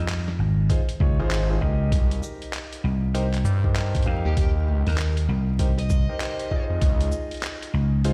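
A swung, 98 BPM glitch hop groove in 4/4 struts along in C phrygian, built on a thumpy, pitched-down electronic kick from 0.7 s and a gritty, tape-warm sampler-style kit of snare, handclaps, hi-hat and shaker sitting back under studio reverb. Two up-front basses drive it: a round, punchy vintage slap bass with tube saturation, joined at 1.2 s by an aggressive, nasal, wave-folded synth bass, while an open concert grand piano throws stabs through sidechain pumping and tape echo over chords moving from Dbmaj7 to Cm7 and Db. A dark fuzz lead guitar surfaces in the background around 4.3 s, and the swaggering, gritty short excerpt is coloured by vinyl crackle and the boom of a big sound system in a bare room.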